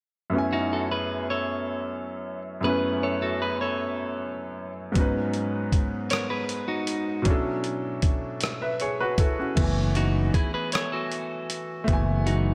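A clear, intimate baby grand piano with audible action noise opens this sultry, yearning six-eight R&B fragment, quickly joined by a dark, picked clean electric guitar as a second line, before a gritty, sampler-style soul drum kit with a thumpy kick, hi-hat, rim click and crash arrives at 5.0 s and a punchy fretless electric bass enters at 9.6 s, inside a dreamy mix soaked in plate reverb.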